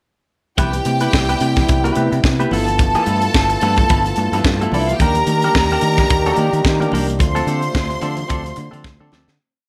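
Light reverb and a studio ambience frame this short, glamorous disco piece, which drives along at 109 BPM in 4/4 with a gentle swing on the sixteenths. An up-front, tight funk kit sits highest in the mix, laying a four-on-the-floor beat under sixteenth-note hi-hats, with a high-tuned snare and a tight kick. A growly fingered electric bass plays octave disco lines, while a clean, twangy, compressed electric guitar chops out sixteenth-note accompaniment a little lower in the balance. Above them, a lush, close string section plays fast runs into held notes as a second line, and a French horn section with light vibrato holds sustained pad chords, with very quiet, ringing high-tuned congas adding a syncopated groove underneath. The harmony moves through Cmaj7, G13, Ebmaj7 and Dm7, and the whole piece fades out from 7.2 seconds, with a drum fill at 8.9 seconds closing it off.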